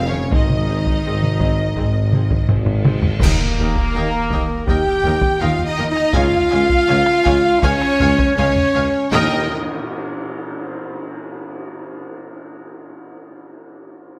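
An up-front French horn section holds sustained chords at the heart of this heroic, adventurous orchestral film cue, moving at 82 BPM in a straight 4/4 in Eb mixolydian. Above the horns, an intense, distant violin section carries the melody, while an airy, tongued concert flute and a second, smooth-topped violin section share a lush counter-line. A focused viola section fills out the accompaniment in the background, and the low end rests on a soft-attack tuba, a very quiet cello section and an even, bowed double bass section. Hard-stick taiko drums, close and dry, drive the rhythm and play a fill from 2.5 s, and dark cymbals, bass drum and tam-tam swell and crash with full-band accents at 3.2 s and 9.1 s as the harmony moves through Ab, Eb and Db back to Eb. A wet scoring-stage reverb gives the orchestra a grand sense of space in this fragment cut from a longer piece.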